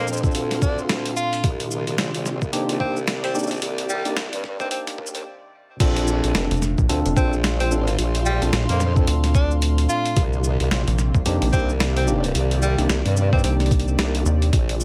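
Funky and playful, this glitch hop excerpt swings loosely in 4/4 and moves between Bbmaj7 and Cm7 chords. A bright, jazz-style tenor saxophone carries the solo melody with vibrato and scooped notes, its line trailed by delay, while a clean tine electric piano played through a combo amp adds stabs that pump against the beat and echo with delay. Underneath, a formant-sweep wobble bass growls up front with tube saturation and chorus, and a hollow, nasal, rubbery square bass joins at 6.5 seconds as the drop begins at 5.8 seconds. The drums pair a thumpy, pitched-down electronic kick with a gritty, tape-warm boom bap kit of medium-tuned snare, hi-hat, shaker and crash cymbal, all with a compressed, sampler-style sound. In the background, a nostalgic, lo-fi tape-like pad holds detuned chords through built-in reverb, and an airy, breathy vintage pad floats higher, both pumping with the sidechain. 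The opening build-up is shaped by a filter sweep on the ambient pad before a brief stop at 5.3 seconds sets up the drop.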